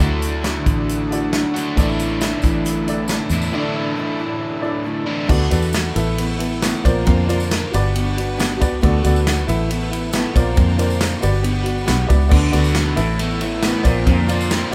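A double-tracked, overdriven electric guitar riff opens this hopeful folk and heartland rock passage at 136 BPM, over a round, foam-muted fingered bass, a boxy picked archtop acoustic, a dark, worn grand piano with audible action noise, and very quiet bowed strings with vibrato, while a natural drum kit with a punchy kick joins almost at once and a jingly tambourine enters in the background at 1.8 seconds. At 5.3 seconds the riff drops out as the music settles into D major, cycling through chords such as D6, Asus2, Bbadd9 and Gmaj7, and the mellow piano plays a short fill just before the riff returns at 12.3 seconds. The band sounds like it is playing live together in one room with light reverb, and the drums and bass sit up front.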